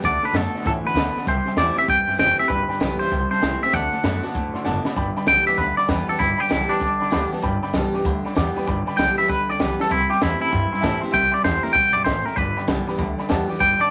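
From the first beat, a clean, twangy electric guitar with tremolo carries the melody up front in this upbeat, retro rockabilly excerpt, swinging at 194 BPM in G major over a bright, picked steel-string acoustic guitar, a woody upright piano with long sustain, and a slightly broken-up riff from an electric guitar through a small old amp in the background. A growly, thumpy pizzicato upright bass and a compact cocktail drum kit, dark and rolled-off with a high-tuned snare and punchy kick, drive the rhythm. A drum fill at 4.7 seconds leads into a clean electric guitar solo from 5.0 seconds, all set in moderate studio reverb with vinyl crackle.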